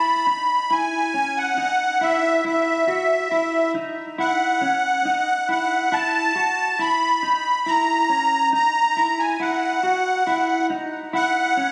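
A slow, straight 4/4 pulse at 69 BPM carries this hazy, ethereal dream pop excerpt, cut from a longer piece and running 11.7 seconds. A musette accordion takes the melody in the range E5 to B5, its reedy, shimmering tone close-miked and sitting dry and up front, with a tape echo trailing its phrases. Beneath it, a mellow electric guitar plays fingered arpeggios between C#4 and F#4, dark and clean in character, softly placed well behind the accordion and coloured by subtle chorus and tape echo. The harmony rests on a rootless C#madd11 before moving to a rootless Bsus4 at 11.1 seconds. The sound, captured on a phone in a small room, is dressed in moderate scoring-stage reverb and compression, giving the pair a dreamy, suspended atmosphere.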